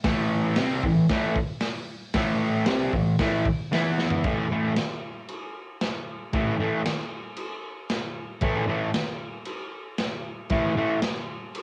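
A lo-fi home cassette recording with light reverb and lossy compression artefacts gives this short fragment of swaggering garage rock a raw edge. At 115 BPM in a straight 4/4, a bright, fuzz-drenched electric guitar, double-tracked, compressed and up front, drives a riff from A2 to E4 over A5 and E5 chords. Alongside it, a crunchy acoustic breakbeat kit sits mid-forward with a gritty, saturated tone, dark cymbals, a medium-tuned snare, a tight kick and a rolled-off top, using crash, hi-hat, toms, snare and kick. A drum fill at 4.0 seconds carries the music from the opening riff into a second section that returns to A5. The guitar stops at 11.0 seconds, leaving the drums alone until the fragment breaks off at 11.6 seconds.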